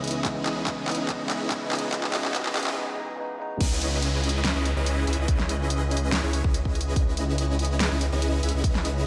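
Soaked in a lush hall reverb with a digital ambience, this dreamy, bittersweet future bass fragment sits in C# minor at 143 BPM, with a half-time feel and a light swing on the sixteenths. A bell-like, clean tine electric piano carries the accompaniment through the build-up, with sidechain pumping and an analog delay, while a very quiet electronic riser and downlifter hover beneath. A drum fill runs through the opening seconds before a short break, and the piano stops at 3.6 s as the drop arrives. Throughout, a huge, compressed supersaw riff with vibrato and a moving notch pumps up front alongside a thick, detuned saw bass holding C#2, coloured by chorus and saturation. A punchy, layered electronic kick joins a pop kit of fat snare, handclaps, hi-hat and crash cymbal over a C#m9 harmony.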